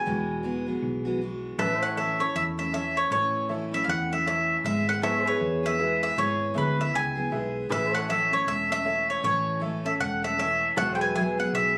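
A woody, up-front mandolin carries the heartfelt, nostalgic melody in this honky-tonk and classic country excerpt at 157 BPM in A major with a swung feel, over a bright, full-bodied acoustic guitar, a round, dark hollow-body bass, twangy pedal steel chords in the background and a jangly tack piano that joins at 2.0 seconds, all heard through the club reverb of a phone recording in the room.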